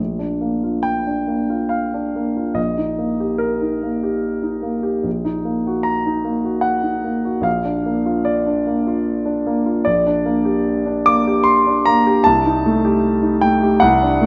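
A polished, up-front grand piano carries this hopeful, passionate romantic character piece on its own, ranging from deep Bb1 bass to a bright D6 in the treble. In Bb major and 3/4 at about 74 BPM, the phrasing bends with free rubato, and the harmony moves from Bb through Eb and a darker Ebm over a Bb bass before returning home and turning toward Gm/Bb and Am7b5/C. A moderate recital-hall reverb gives the warm tone a sense of space through this 14.3-second excerpt from a longer work.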